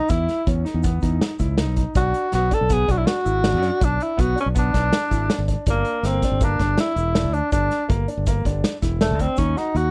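With little reverb, this driving, brooding progressive instrumental in 5/4 at 162 BPM puts a breathy tenor saxophone up front with vibrato, subtone and scooped notes in a vintage jazz style, over a long-sustaining baby grand piano playing arpeggios, a bright, punchy fingered electric bass, a loose acoustic drum kit with a punchy kick and a pumping small-room sound, and a grainy egg shaker in the background, moving through E5, Bm, Gm and Ebm in this cut from a longer piece.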